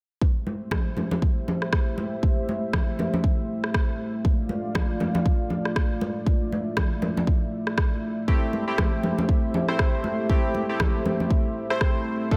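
Spiritual and driving, this afro house excerpt moves at 119 BPM in 4/4 with a 16th-note swing in A minor, cycling through Am7, Dm and back to Am7. A deep, layered electronic kick drum sits up front from 0.2 s, joined by ringing acoustic congas played with soft hands in a small room and a tape-warm electronic rim click, both kick and rim carrying studio reverb. Underneath, a dark analog pad of detuned sawtooth and triangle with a sub octave holds moody sustained chords with a slow attack and long release, its chorus and sidechain pumping giving the harmony a breathing pulse. At 8.3 s, round analog keys enter with fast-attack, decaying stabs, their detuned sawtooth tone colored by ring modulation, a filter sweep, chorus, sidechain pumping and dub echo. Light reverb frames the mix, setting the percussion against the shadowy harmonic bed.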